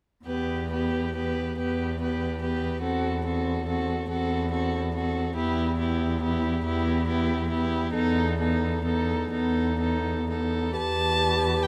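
Solemn and yearning, this short excerpt from a slow romantic movement for string quartet moves in a rubato 6/8 at around 39-48 BPM in E minor, its harmony shifting from Em to F#m7b5/E and back to Em over the cello's E2. The focused first violin carries the melody with rich vibrato while the second violin plays a smooth, even line beneath it, the dark viola adds expressive portamento in the accompaniment, and the up-front cello anchors the bass with a soft attack and its own sliding portamento. Close, detailed microphones and light reverb capture all four bowed players from 0.3 to 11.7 seconds.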